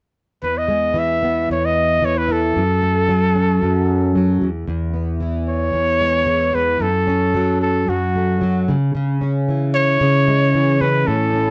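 A clear, close-miked pop trumpet with vibrato, scooped notes and slapback echo carries the sunny, heartfelt melody at 113 BPM in E major over a double-tracked, fingerpicked flamenco guitar with fresh strings, moving through E and F#m, passing through a brief chordless moment at 4.4 seconds, then returning to E and F#m and ending on C#m in this dry, close 1970s-style studio recording with moderate booth ambience, cut from a longer piece.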